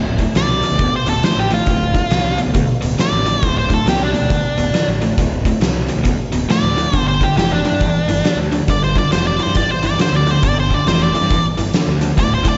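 A swung 4/4 groove drives this gritty, heavy blues rock and southern rock fragment, where an oversized, low-tuned acoustic drum kit with a fat snare and punchy kick sits up front in a stone-room sound. Alongside it play a double-tracked, overdriven electric guitar riff, a growly, fuzz-soaked picked bass, and a dark octave-fuzz lead guitar melody with slapback echo, all over a D7(no3) chord that shifts to G5 at 6.9 seconds under light reverb and a rolled-off top end.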